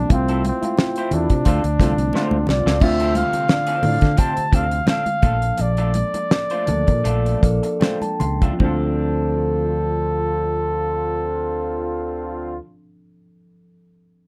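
Smooth and bittersweet, this excerpt of lush 1970s-style soul is led up front by a breathy, mellow flugelhorn with scooped notes and slapback echo, over a reedy electric piano colored by overdrive and phaser, a growly fingered bass and a slightly broken-up, lo-fi guitar riff. A dry drum kit with a fat snare and tight kick joins a band accent at the start and plays a fill at 2.1 seconds before the music slows down, while bright congas and a clear trombone section playing jazz-style stabs sit in the background. The electric piano plays a fill at 7.1 seconds, the drums stop at 8.8 seconds, and the piano carries on alone once the other parts have finished.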